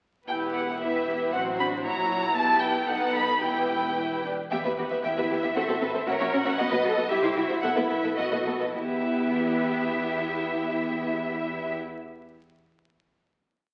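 Heard through the crackle of a very old 78 rpm record and a wet scoring-stage reverb, this short, complete classical-period movement for string orchestra in E minor moves quickly in 2/4 at about 103-118 BPM, with a restless, dramatic rubato feel. Up front, a dark violin section carries the expressive melody with vibrato and portamento, while a second violin section with a smooth top and a warm, smooth viola section drive the harmony with rhythmic ostinato chords. Beneath them, soft-attack cellos sustain the bass and a rich, distant double bass section doubles it, before the music slows from 6.1 seconds into a final E minor chord at 8.7 seconds.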